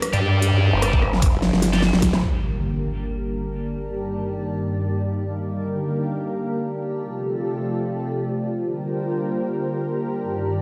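At 150 BPM in 4/4, a half-time feel with a light 16th-note swing drives this chaotic, heavy wobble dubstep cut from a longer piece, set in G minor and tuned slightly flat to A4 = 437 Hz. It opens mid-drop: an overdriven kit with a huge snare, bright hats and rim clicks sits up front, joined by a knocking, layered electronic kick, and a drum fill leads to a band accent before the section ends at 2.2 seconds. Underneath, a sawtooth formant-sweep wobble bass and a growling, aggressive growl bass churn low with chorus and saturation, while a high-gain, double-tracked distorted guitar throws short stabs through dub echo. A lush, thick, detuned unison pad holds sustained, warbling chords throughout, pumping against the sidechain, and after an electronic impact a long filter sweep on an analog synth pad runs over a Gm, Eb/G, Gm, F, Gm progression. From 3.4 seconds a cloudy, evolving granular pad adds a blurred triangle texture, all heard through light stone-room reverb as if played on a big sound system in a bare space.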